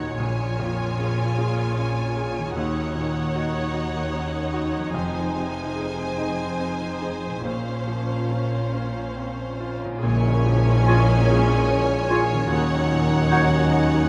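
Intense, lush violin sections carry a vibrato-rich melody and a more distant second line in this sorrowful, moving cinematic orchestral excerpt in Bb minor, a slow rubato 6/8 at around 46-51 BPM, over a clear concert grand piano with deep bass in the background, soft-attack violas, even cellos, focused double basses and very quiet ringing harp arpeggios, with a dark cymbal swell and tam-tam entering at 7.5 s, mellow French horns sustaining chords from 10.0 s, and an airy flute group, present clarinet and vintage oboe adding brief second lines from 10.9 s, within a wet concert hall reverb.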